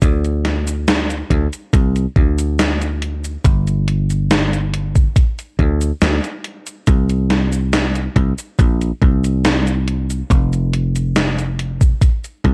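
A slow, straight 4/4 groove rests on a thumpy, sampler-style electronic kick and a tape-warm 80s digital drum machine, whose cabasa, hi-hat and gated-reverb snare sit up front in a small room. A dry, thumbed slap bass plays low throughout, growly and foam-muted yet bright and punchy. This faded, nostalgic vaporwave fragment, cut from a longer piece, keeps a close, mostly reverb-free sound.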